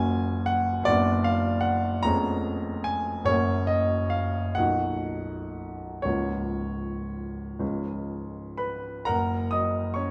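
Bathed in the lush reverberation of a recital hall, this short fragment of a serene, tender romantic nocturne in F# major features a solo grand piano, polished and up front, drifting with rubato in a slow 6/8 at 38-54 dotted-quarter beats per minute through a gently shaded progression from F# to Bm/F#, C#7/E#, F#, Bmaj7, F#/C# and C# and back home to F# at 9.1 seconds.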